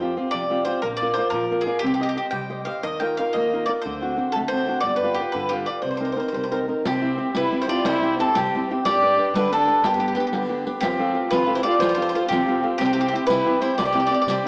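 Italian folk serenade in 6/8 at 120 BPM with a rubato, romantic and passionate feel, where a bright picked bowl-back mandolin carries the melody up front over fingerpicked flamenco guitar with fresh strings and a woody pizzicato upright bass, then at 6.9 s the music turns from C minor to C major as a close, warm violin with vibrato and portamento adds an expressive second line and a compressed, saturated riq adds bright jingles in the background, all heard through a reverberant scoring stage and a worn, warbling cassette sound with small-speaker character, cut from a longer piece.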